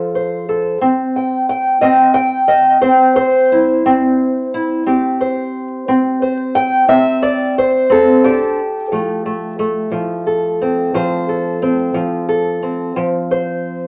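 A fingerpicked old ladder-braced acoustic guitar carries this short cut from a longer acoustic country blues piece, playing solo and up front from 0.0 to 13.9 seconds. Its sound is dark, woody and boxy, with the character of old strings, and it ranges from F3 up to G5. The mood is rollicking yet soulful, moving at 59 beats per minute in a straight 12/8 feel in C major, tuned slightly below standard pitch. The harmony sits on F, moves to C at 0.8 seconds and returns to F at 8.9 seconds. A small room reverb adds a wet ambience, and a layer of vinyl crackle lends the recording an aged patina.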